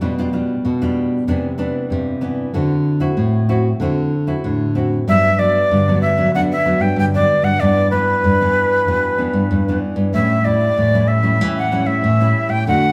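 Two up-front, fingerpicked nylon-string guitars open this festive, joyful samba-choro excerpt in G major at 95 BPM, one picking fresh-stringed classical chords over a full-bodied bass line from the other, until a breathy, bright jazz flute with vibrato and a chiffy, crisp attack takes the melody at 5.1 seconds, the whole band playing live in one room under a large, wet studio reverb.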